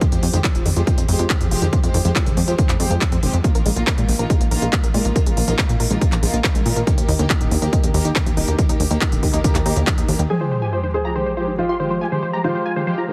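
Uplifting trance at 140 BPM in F minor, soaring and bittersweet, cut from a longer piece and moving through Fmadd9, Bbsus4 and Eb before returning to Fmadd9. A lush symphonic string section holds sustained, bowed chords with vibrato and a soft attack, while a detuned unison pluck in the background spins arpeggios through cassette-tape colour and digital delay, a filter sweep running across it, both pumping with the sidechain. A heavy, layered electronic kick and a techno kit of handclaps and smooth hi-hats, tape-softened and re-recorded in a small room, drive the groove alongside a punchy, funky analog bass that plucks and decays. The kick drops out at 10.0 seconds, and at 10.3 seconds the rest of the kit and the bass fall away as an up-front supersaw stab takes the melody, phased and delayed under its own filter sweep, joined by a dark, mellow baby grand piano with audible action noise and tape echo as a second line. 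A sub drop and impact land at that moment, running until 12.0 seconds. The mix is dry and heavily compressed, with a radio-ready sound.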